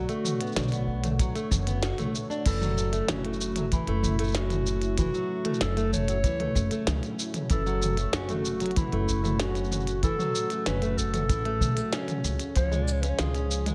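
A dark, classical-style clarinet with vintage 12-bit sampler grit carries the melody in this autumnal, delicate folktronica excerpt in F# minor at 95 BPM, over a boxy fingerpicked parlour acoustic guitar with digital delay, a smooth detuned sawtooth pad with chorus in the background, woody pizzicato upright bass, a tight brushed acoustic kick drum with a rolled-off top, and an up-front minimal click drum kit with clicky hats and a tiny snare, all moving from Bm7 to F#m7 in light small-room reverb.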